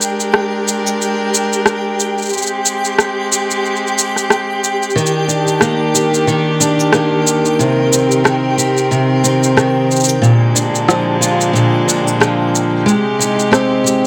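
Folktronica at 91 BPM with a gentle 16th-note swing and a hopeful, delicate mood, in which a bright, intense string quartet holds bowed chords with light vibrato and 12-bit sampler grit, an up-front electronic shaker and rim click keep time, and a twinkling granular texture adds a sparkling octave-up shimmer, before a dark, boxy, ladder-braced acoustic guitar enters at 5.0 s with picked arpeggios, finger squeak, sampler grit and digital delay, over chords moving from Bb7 through Abmaj7, Ebmaj7 and Cm7.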